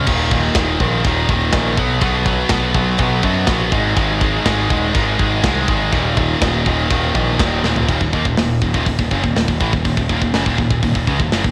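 Dark and relentless, this short heavy metal excerpt drives along at 123 BPM in a straight 4/4, centred on Eb minor. A high-gain, double-tracked distorted guitar sits up front with a bright riff built on power chords moving from Eb5 through B5 and Ab5, its tone coloured by a cassette-tape grit. Beneath it, a growling picked electric bass pushes an overdriven, direct-and-amped low end. The tight metal drum kit enters at 0.1 seconds with a tight kick, a medium-tuned snare, and bright china, crash and hi-hat cymbals, then plays a fill at 7.6 seconds into a new passage at 7.9 seconds settling on Eb minor. A small room reverb and the character of a home cassette recording give the whole a raw, close-quarters feel.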